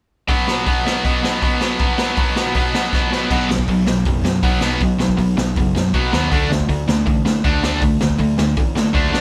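Energetic and rebellious, this punk rock excerpt charges along at 160 BPM in a straight 4/4, with a bright, double-tracked overdriven guitar riff and a raw garage drum kit with a boomy kick and dark cymbals starting together up front at 0.3 seconds, moving from B5 to D5. After a drum fill ends at 3.3 seconds, a dark, round fuzz bass joins the picked overdriven guitar, while the saturated, gritty kit pumps in its small room. Light reverb gives the whole the feel of a band playing live in one room.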